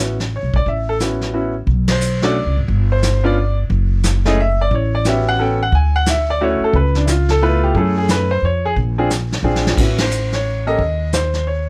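Swinging in 3/4 at 178 BPM, this playful, sophisticated jazz piano trio excerpt in A major sets a clear, open concert grand carrying the melody up front over a woody, thumpy pizzicato upright bass on gut strings, while a vintage brush kit with dark cymbals and a rolled-off top joins at 0.2 s, adds a fill just before the band accent at 9.9 s, and the close, dry sound catches chords moving from A69 through Dmaj7 and C#7alt to Bb9.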